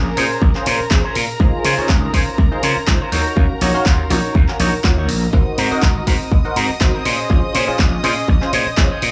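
Filtered disco house at 122 BPM with a swung 16th feel, this funky, feel-good passage cycles through Bbm9, Dbmaj7, Ebm7 and Ab9 in a small, dry room. A growly, overdriven slap bass anchors the low end alongside a detuned sawtooth polysynth comp treated with chorus, phaser and cassette tape colour, and a twangy, envelope-filtered electric guitar riff enters at 0.2 s. Beneath them, a soft-bowed chamber violin section holds sul tasto chords with light vibrato, while an analog drum machine supplies handclaps and hi-hat and an up-front layered electronic kick arrives at 0.4 s. The synth, violins, bass and guitar all pump against the kick and sit behind a low-pass filter.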